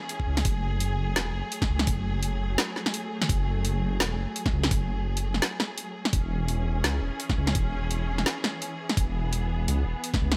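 Set in a light reverb, this heavy, dark half-time drum and bass passage at 169 BPM in F# minor is cut from a longer piece. An up-front, overdriven kit of woody snare and bright hats pairs with a knocking electronic kick, while a deep, rumbling detuned saw bass with a beating, sustained tone sits low beneath them. A distant, lush symphonic string section holds bowed, vibrato-rich chords from F#madd9 to E6 at 6.1 seconds, pumping under sidechain compression.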